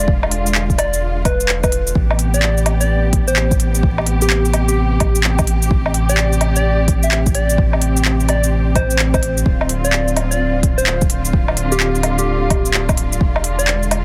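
A melancholic, nocturnal future garage excerpt opens with a gentle, warbling FM synth lead carrying the melody through chorus, tremolo and dub echo over veiled, con sordino studio strings roughened by 12-bit sampler grit and pumping with the round sine sub bass, while an overdriven electronic kit of crisp hats, handclaps, shaker and woodblock sits up front with a deep, tape-toned kick entering at 0.1 seconds, all in a dense, dry mix dusted with vinyl crackle.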